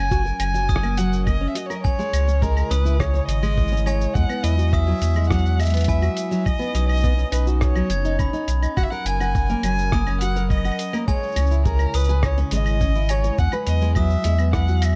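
A round, deep sine sub bass sits up front throughout this intimate, autumnal folktronica piece, cut from a longer work and set in a steady 4/4. Above it, a single bowed violin carries the melody with vibrato, portamento and a soft attack, its expressive tone roughened by vintage 12-bit sampler grit and trailed by a digital delay. A fingerpicked nylon-string guitar adds deep classical arpeggios, while a warbling, nostalgic pad of square and triangle tones holds slow-blooming chords in the background, treated with chorus and its own reverb. A muffled, thumpy kick, compressed and re-recorded in a large room, anchors a pitched-down, tape-warm sampler kit of cabasa, claves, hi-hat and rim click, and from 0.7 s to 14.2 s a bright, sparkling glockenspiel struck with brass mallets rings out a second line through delay. The production is dark and warm, wrapped in digital ambience.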